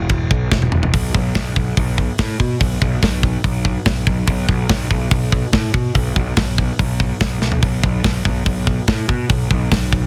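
Dense and heavily limited with a modern master, this dry heavy metal excerpt places a bass and a drum kit up front, moving at 143 BPM in a straight 4/4. A picked electric bass carries the low end from the opening moment, its fuzz-laden, overdriven, punchy amped tone ranging from E1 to B2. A tight acoustic metal kit joins at 0.1 seconds, with a mid-forward studio-room sound made up of kick drum, medium-tuned snare, hi-hat, ride cymbal and toms. A drum fill at 0.5 seconds leads into the main section, and another fill arrives at 7.4 seconds. The mood is epic and aggressive, and the music is tuned to A4 = 437 Hz.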